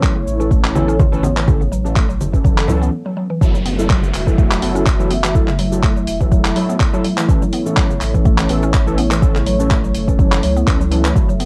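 A lightly swung afro house groove rests on a deep, overdrive-roughened electronic kick and a layered deep house kit of cabasa, handclaps and hi-hat, with soft-handed congas in the background from 0.8 to 2.8 s. Beneath it, a round sine sub bass pumps against the beat while a dark, detuned sawtooth pad holds moody sustained chords, a woody, warbling FM mallet pluck spins mellow arpeggios through tape echo, and a barky, gritty tine electric piano fires stabs through a combo amp. After a short break, the hypnotic drop arrives at 3.4 s with a faint downlifter in the background, and the pad, pluck, piano and drums carry a cassette-tape haze in a lightly reverberant home-recorded space.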